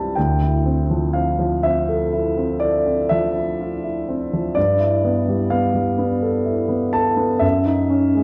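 A warm grand piano carries this brief fragment of impressionist classical music alone, sitting up front with an open tone and long sustain that lets each chord hang in the air. The mood is luminous and hazy, moving at a slow 41 BPM counted in dotted quarters within a 9/8 metre, with a freely breathing rubato feel. The harmony drifts from Dm9 at 0.2 seconds to G13 at 4.6 seconds, then settles on F#5 at 7.4 seconds, with the playing spanning C2 to A5. The piano is tuned to A4 = 442 Hz. A recital hall's reverb, with a 1.4-second decay, surrounds the instrument, and the dark production adds to the dreamy, veiled atmosphere across the full 8.2 seconds.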